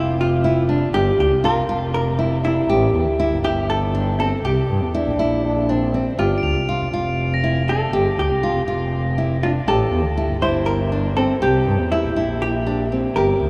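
Up front, a fingerpicked classical nylon-string guitar spins acoustic arpeggios, with an occasional finger squeak, in this urgent, pensive chamber piece cut from a longer work. It is in G dorian and moves in 7/8 at 240 BPM counted in eighths, with a straight feel over a cycle of Gm7, A7(no3) and C7 that plays twice. A dark, clean, compressed hollow-body electric guitar picks the melody, while a single muted double bass, bowed con sordino with vibrato and a soft attack, sits just as close with a veiled tone. At 4.9 seconds a solo French horn adds a brief, clear second line in classical style from the background, and at 6.4 seconds crotales struck with plastic mallets bring an airy, shimmering, bell-like ring high above. The parts sit in a vast, echoing space, drenched in a huge ambient reverb.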